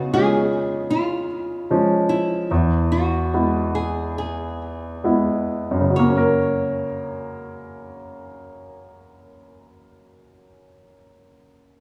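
This rough home demo mix has a small room ambience and light studio reverb, framing a tender, hopeful pop excerpt in F# major at 65-78 BPM that slows over its first 5.9 seconds. An up-front concert grand piano carries the accompaniment with a clear, polished tone, deep bass and short sustain, moving through C#, E and then F# at 5.9 seconds. A small, fingerpicked nylon-string guitar with digital delay sings the melody until 10.8 seconds, and the piano carries on alone to 11.8 seconds.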